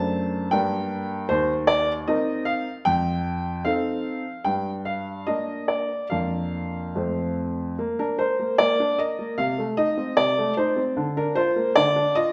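Classical-period piano sonatina in Bb major, cheerful and playful, moving at 76 BPM in 2/4 with a rubato feel and tuned to A4 = 436 Hz in this brief cut from a longer piece. A clear baby grand piano plays solo across the whole 12.3 seconds, spanning Eb2 to A5 with an open, up-front sound and long sustain, while a recital hall reverb with a 1.5-second tail gives the room a wet glow. The harmony starts on D7/F# and passes through G minor and F7 before the second section begins at 7.8 seconds, settling on Bb and a colorful Cm69 before resting on Bb/D.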